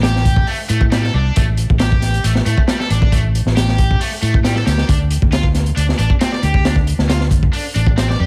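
Breakbeat in A minor at 136 BPM in a straight 4/4, this short cut from a longer piece feels raw and funky from its first second. The crunchy breakbeat drum kit sits up front with a punchy kick, a high-tuned snare and hi-hat, its small-room sound dark, gritty and saturated, with a rolled-off top. Beneath it, a fingered electric bass runs between A1 and A2, amped, round and up front. A cranked stack guitar plays a bright, overdriven, double-tracked riff from G3 to D5, thickened by tube saturation and tape echo and sitting a little behind the rhythm section. The harmony rests on A7(no3) before shifting to D5 at 4.7 seconds, all within a single section that closes at 8.3 seconds under a studio reverb.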